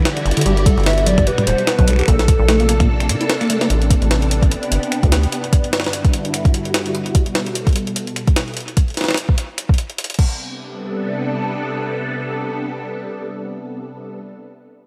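Light reverb and a digital ambience frame this eerie, intricate IDM passage at 148 BPM in A dorian, cut from a longer piece, where a warbling, detuned lead carries a nostalgic melody through chorus, cassette-tape colour and diffuse delay over a silky string machine whose sustained chords, treated with phaser and ensemble chorus, get a filter sweep from 3.7 seconds. A rubbery acid bass plays resonant, plucky arpeggios up front with lush chorus and analog delay, while a second, saturated acid bass holds the low line further back. A gritty, pitched-up jungle sampler kit with a high-tuned snare, finger snaps, toms and crash runs with an up-front soft electronic kick until 10.3 seconds, and a very quiet, flickering granular texture drifts underneath, with a brief break arriving at 2.9 seconds.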